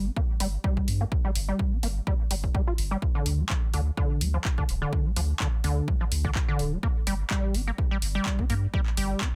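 A dry, punchy analog kick drives a 126 BPM groove in 4/4 with a light 16th-note swing, joined at 0.4 seconds by overdriven drum-machine handclaps and hi-hat in this short, trippy acid house excerpt. Over a deep, thick, saturated sub bass that pumps against the kick, a squelchy, hollow square-wave acid riff with fast, resonant filter plucks runs under a continuous filter sweep, colored by overdrive, analog chorus, delay and sidechain pumping. The hypnotic mix is dry and dense, with the kick up front and a heavily limited modern master.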